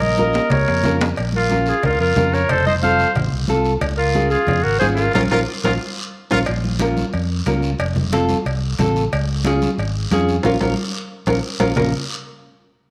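A driving, passionate cumbia excerpt in Bb minor moves at 181 BPM in straight 4/4, with hard-hand congas sitting in the background, a raspy guiro, and close, dry metal-shell timbales and cowbell opening on a drum fill and firing another near 10.8 s. A round, up-front fingered electric bass and a full-bodied, fingerpicked nylon-string guitar carry the Bbm, F and Db changes throughout. A smooth classical-style clarinet leads over a bright, punchy trumpet with vibrato until 6.4 s, when both drop away. The band hits accents from 5.1 s and again from 10.4 s, all set in an echo-chamber reverb with small-room ambience.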